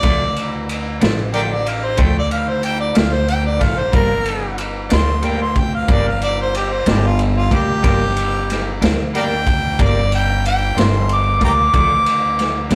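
Rolling in a slow, straight 12/8 blues, this mournful, smoky fragment moves from D minor to G minor and returns to D minor at 11.7 seconds, while a jazz-style harmonica solos up front throughout with a soft attack, scooped notes and tongue slaps. Beneath it, a clean, picked electric guitar shimmers through harmonic tremolo, a woody pizzicato upright bass with gut strings thumps out the low end, and a gritty garage drum kit brings a punchy kick, a medium-tuned snare and dark ride cymbal with a pumping, rolled-off character. The stone-room reverb and tube saturation give it the rough, close feel of a rehearsal-room take.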